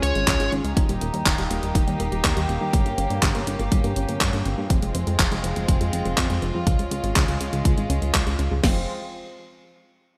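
Italo disco with a danceable, melodramatic air: a distorted, high-gain lead guitar note, gritty with vintage sampler crunch and delay, sounds only until 0.5 seconds, over a floating, distant string section holding soft-attack chords and a round analog pluck arpeggio in the background whose filter sweeps through the passage, hazed by chorus, cassette-tape color and delay. A glossy, chorused synth bass of pulse and sawtooth waves carries the Db, Eb, Gdim and Fm changes, while layered electronic house drums, re-recorded in a large room, bring handclaps and hi-hat alongside a punchy kick, cracking snare and crash cymbal that sit up front from 0.3 seconds. The bright 1980s-style digital production is bathed in a lush hall reverb.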